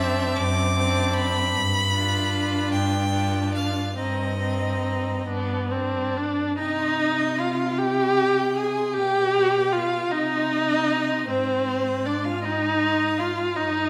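Melancholic and solemn, this slow romantic string quartet movement in a flexible, rubato 6/8 sways through a hall's lingering reverb as a bright, intense first violin sings the melody with airy bowing and vibrato above a rich second violin's expressive portamento, while the close, up-front viola and the up-front cello, both soft-attacked and sliding between notes, carry the accompaniment and bass through a shift into a new section at 6.6 seconds.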